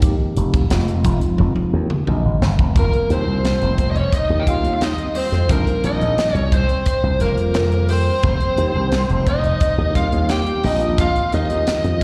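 Electric jazz fusion at 88 BPM in F minor, slick and driving, this passage cut from a longer piece opens on an Fm9 chord with a bell-like tine electric piano carrying phaser and slapback echo, a growly slap bass through an envelope filter, and a crisp, airy, polished fusion drum kit with a high-tuned snare and tight kick, the drums and electric piano both filling from 1.4 and 1.7 seconds. At 2.8 seconds the harmony moves to F9sus4 as a bluesy, dark, distorted lead guitar takes the melody while a breathy tenor saxophone with vibrato, subtone and scooped notes plays a second line, both touched by slapback echo. A Bb9sus4 arrives at 10.6 seconds, and the whole has the sound of a live gig heard through the venue's PA with recital hall reverb.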